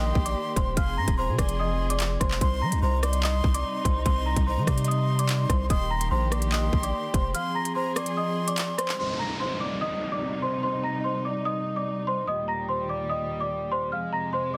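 A slightly out-of-tune, vintage celesta opens this tense, dark drill excerpt in C minor, its bell-like, delicate melody sitting up front with delay, over a breathy metal jazz flute carrying a soft-attack second line, also with delay. Beneath them, an intimate studio string section holds bowed sul tasto chords with vibrato. A deep, sine-toned 808-style bass with a fast attack and long decay sits up front. Moments later, an electronic drill kit arrives with a hard-clipped kick, crisp hats, handclaps and rim clicks in a half-time feel at 146 BPM. The harmony cycles through Eb, Fm and Cm. At 7.3 s the bass drops away and the kick mutes, and at 9.0 s the drums and flute have gone, leaving celesta and strings as an electronic downlifter sweeps through a sparser closing stretch. The mix is dense and heavily limited with studio reverb.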